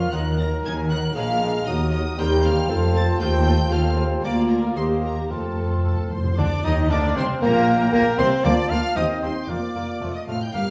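A quick, spirited and graceful classical-period movement for symphony orchestra at 116 BPM in 2/4, where a focused chamber violin section carries the melody over a second violin line, while oboe, airy flute and mellow clarinet weave further lines above a clear bassoon and a smooth viola section. Mellow French horns hold sustained chords and rich double basses join portamento-tinged cellos on the bass, as the harmony moves through minor-leaning changes from Ebm toward F. Soft-mallet timpani add a round fill from 5.3 to 6.3 seconds, and a mellow trumpet enters with stabs at 5.8 seconds, all set in a wet recital-hall reverb.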